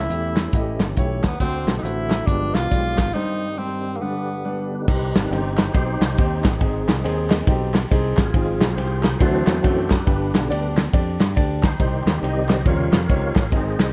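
Uptempo gospel at 139 BPM with a swung 4/4 feel, solemn and fervent, settling into C harmonic minor, in a short cut from a longer piece. A clear, up-front tenor saxophone with light vibrato and scooped notes carries the melody until 4.7 s, over concert grand piano with deep bass and long sustain, a growly, punchy fingered electric bass, a dark-cymbaled soul drum kit and crisp vintage handclaps in the background. After a break from 3.1 s, the fat, lightly overdriven tonewheel organ, with key click, chorus vibrato and a slow rotary speaker, takes a solo from 4.9 s to the end, all in a dark production with light reverb.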